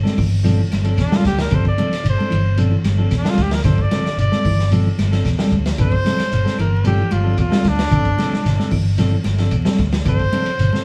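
Joyful and funky, this afrobeat excerpt at 112 BPM rides a single G9sus4 chord, with a punchy trumpet carrying a solo melody from 1.0 s, its light vibrato and smooth top floating over a round, dark fingered electric bass and a gritty, saturated breakbeat kit with a tight kick and dark cymbals. Two clean picked electric guitars fill in the harmony, one playing arpeggios and the other adding stabs, with one of them tucked in the background, while very quiet congas, a grainy shekere and woody claves sprinkle percussion around the groove. The band sounds like it is playing live together in a stone room with a wet reverb, and a layer of vinyl crackle gives the cut a vintage feel.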